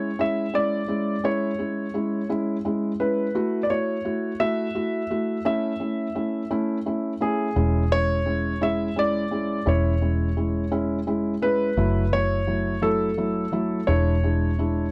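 A warm concert grand piano carries the aching, dramatic melody of this slow pop excerpt in 6/8, its action noise audible and close, over a felt-muted upright piano whose thick, mellow, intimate chords sit just as near. At 7.6 s a dark, foam-muted fingered electric bass enters, round and punchy, anchoring the harmony as it moves from E6 to F#m7 before landing on E7. The dry, close 1970s-style sound in a small room keeps every part up front and personal.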